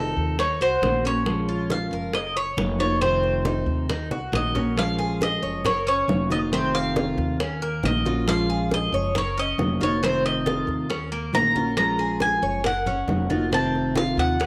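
A bowl-back mandolin carries the melody up front over fingerpicked, full-bodied nylon-string guitar, metallic picked Cuban tres arpeggios and a woody, thumpy pizzicato upright bass, all entering at 0.0 s in a sultry Cuban son and guajira groove at 137 BPM in Bb minor. The mandolin, guitar and tres have a cassette-tape color, and the guitar's finger squeak is audible. Damped, low-tuned congas join at 0.2 s and tight, high-tuned bongos at 0.4 s in the background, with a drum fill at 3.9 s. The Ebm7, Bbm7, Gb6 and F7 cycle repeats under a moderate spring reverb in this homemade, cassette-recorded excerpt.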